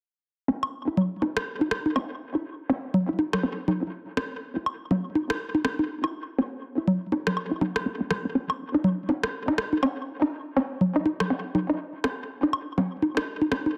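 A squelchy, detuned blip pluck with a resonant filter snap and a fast, short decay carries a quirky riff between G#3 and E4, thickened by chorus and a digital delay. This is minimal techno in C# minor at 122 BPM, with a swung sixteenth-note feel and a cool mood. Up front alongside it from 0.6 seconds, an electronic woodblock, congas, bongos and rim click have a tape-warm analog character and dub echo, all set in a moderate plate reverb within a dense, heavily limited modern master in this short excerpt cut from a longer piece.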